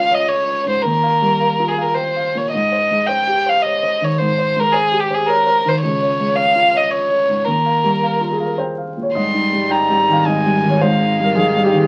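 A solo violin carries the melody up front, its tone airy and soft-edged with light vibrato, bowed sul tasto for a close, intimate sound. Beneath it, a dark, mellow grand piano supplies the accompaniment, its notes natural in color and short in sustain. This neoclassical passage, cut from a longer piece, moves in a flexible, rubato three-beat lilt, and its mood is intimate and hopeful. At 9.1 seconds a very quiet chamber string section slips in with pure, floating sustained chords. From 9.2 seconds a bowed cello adds a second line and a double bass holds the low end, both set in the background. Moderate studio reverb gives a modest sense of room, and the recording carries the character of a very old 78 rpm record, with vinyl crackle throughout.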